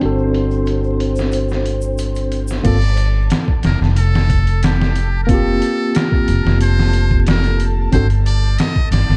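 A straight 4/4 groove at 91 BPM anchors this brooding, cinematic trip hop passage in G minor, cut from a longer piece. The sampler-style drum kit sits up front with a thumpy kick, medium-tuned snare, hi-hat and crash, sounding compressed, pitched down and gritty, with each part high-pass filtered and the whole re-recorded in a large room. A pizzicato upright bass with steel strings holds low and woody beside it, while a tube shaker and group handclap murmur in the background until 2.6 seconds, as a filter sweep moves across the opening D7/G chord. A mellow tine electric piano colours the accompaniment with harmonic tremolo, 12-bit sampler grit and tape echo until 8.1 seconds, over distant string-machine cellos whose sawtooth tone, sub octave, soft attack and long release are shaded by phaser and ensemble chorus. From 2.7 seconds a metal-muted trumpet takes the solo melody over Gm11, brilliant yet thin and buzzy with light vibrato and dub echo, before the harmony settles on D5/G. 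The dark, warm production carries vinyl crackle, a low-pass filter and digital ambience, tuned slightly sharp to A4 = 444 Hz.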